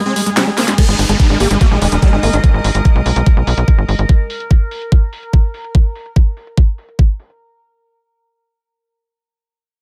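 A straight 4/4 pulse at 145 BPM drives this alien, psychedelic trance fragment: a swarming, detuned rave lead with chorus, phaser and delay and a squelchy, gritty acid bass pump over a sustained, overtone-sweeping drone and a clear, bowed symphonic string section in the background, while an overdriven drum and bass kit with a cracking snare enters at 0.2 s. A drum fill at 0.6 s then brings in a knocking, tape-warm electronic kick and a faint electronic downlifter at 0.8 s, as the kit's hats and cymbals turn filter-swept, and a tight, nasal sequencer bass joins at 0.9 s.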